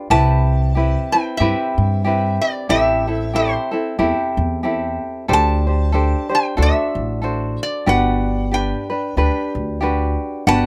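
A fingerpicked tenor ukulele opens this languid, sunny Hawaiian piece, light and up front, with an upright bass and a metal-body resonator slide guitar joining at 0.1 seconds. The tempo sits at an easy 92 BPM in 4/4, with gently swung eighth notes and a home in G major. The resonator carries the melody high above, its slide tone metallic and nasal, played with fingerpicks, while the ukulele picks out the chords beneath it. The plucked bass, also up front, gives a woody, warm low end on steel strings. The harmony drifts from Cmaj7 through Am7 and a D7sus4 resolving to D7 before settling on Gmaj7 at 7.9 seconds. Close, detailed microphones and a dry room keep every acoustic instrument intimate and present in this short excerpt cut from a longer piece.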